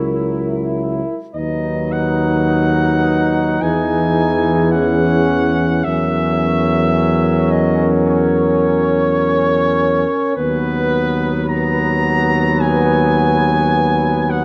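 Serene and warm, this hymn-like classical excerpt for brass band moves at a rubato 53 BPM in B major, with an up-front flugelhorn singing the melody with light vibrato over a loose, mellow French horn section on the second line, a tight, bright trombone section and a close-miked solo trombone in the background as accompaniment, and a soft-attacked tuba holding the bass, all set in the moderate reverb of a scoring stage.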